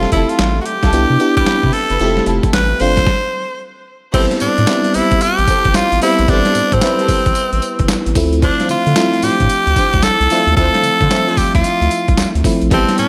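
Punchy and bouncy, this new jack swing cut, lifted from a longer R&B piece, rides a swung sixteenth-note feel. A raspy, close-miked tenor saxophone carries the melody up front, its edgy tone marked by vibrato and scooped notes. Beneath it, a glassy FM electric piano with bell-like attacks, chorus and phaser fills out the harmony, while a round, deep analog bass anchors the low end. A lush, woody string section adds stabs from the background, and a gritty, pitched-down boom bap drum kit with a thumpy kick, overdrive and gated reverb drives the groove with handclaps, tambourine, hi-hat and crash cymbal. After a stop from 3.1 to 4.1 seconds, the harmony settles from shifting major-seventh chords into a minor-seventh passage for the rest of the clip, all set in a light reverb.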